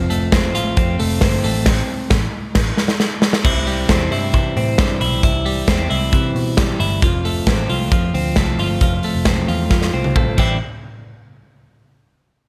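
Wistful and restless, this short cut from a longer jangly indie pop piece moves at a straight 134 BPM in common time. A bright, twangy twelve-string electric guitar plays clean, compressed arpeggios up front, colored by a slapback echo. Underneath, a vintage muted picked electric bass adds a dark, round, foam-muted tone, while a big rock drum kit with a punchy kick, medium-tuned snare, crash, hi-hat and toms sits prominently, its bright cymbals and gated reverb giving it a large-room punch. The band hits an accent together from 1.7 s as the chords drop out, with a drum fill leading into a new section at 3.4 s, and another fill arrives near the close before the parts stop at 10.6 s. The harmony moves between F, C and a closing Am7, all held in a small room reverb.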